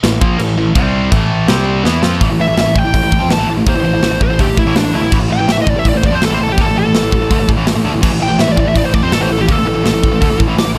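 A dark, high-gain lead guitar enters at 2.4 seconds with a distorted solo spanning D4 to D6, riding over a bright, double-tracked rhythm guitar riff and a punchy fuzz-toned bass in this relentless heavy metal excerpt in A minor at 165 BPM. The tight drum kit, polished and airy with bright cymbals and a tight kick, opens in half time before a drum fill at 1.8 seconds launches the full-tempo section. The riff moves between A5 and C5 power chords, touching Cadd11/E just before the solo begins, all set in a studio ambience.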